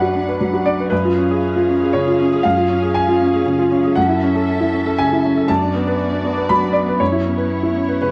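Neoclassical piano and strings in a fragile, melancholic 3/4 with a rubato feel, where an intimate, boxy grand piano sits up front with audible action noise over veiled, con sordino strings holding bowed chords with vibrato, all under light reverb in a dark production that drifts from Bm7/F# through C#7/F# and F#m7 across this short excerpt cut from a longer piece.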